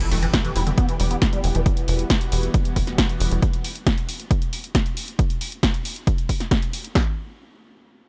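This short cut from a longer uplifting trance track sounds dry, with little reverb, its soaring, driving mood set at 136 BPM in E minor over a straight 4/4 pulse. A squelchy, resonant acid bass plays arpeggios across E2 to E4 for the first 1.6 seconds, its square-wave tone smoothed by phaser, lush chorus and digital delay, pumped by sidechain, and shaped by a filter sweep, while a very quiet electronic impact sounds beneath it. A tight sequencer bass holds E1 from 0.1 to 3.4 seconds with a sawtooth and square-wave filter pluck, fast attack and moving notch, pumped by sidechain over an E minor chord before the harmony drops away. Two overdriven analog drum machine parts carry the rhythm, one on hi-hat and snare and a louder, up-front one on kick and snare with a punchy hit. The drums run on alone after the bass stops, the kick and snare part lasting until 7.1 seconds as a brief new section begins.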